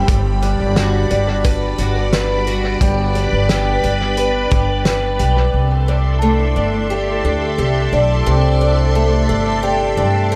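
In this blissful, ethereal dream pop passage, a picked twelve-string acoustic guitar plays boxy, shimmering arpeggios up front with a subtle chorus and tape echo, while a lush vintage string machine holds sustained chords through a phaser and ensemble chorus. A woody, thumpy upright bass anchors the low end, and a loose indie drum kit with a fat snare and tight kick, its top rolled off and touched by tape echo, plays only until 5.4 seconds. The tempo sits at 88 BPM in a straight 4/4, with the harmony moving from Gmaj7 to G before settling on C69 at 5.5 seconds. A small, bell-like celesta is heard very quietly at the start and again from 6.2 to 8.6 seconds, adding a sweet, delicate glint. Light reverb and small room ambience give the echo-heavy mix a soft, floating quality in this short excerpt cut from a longer piece.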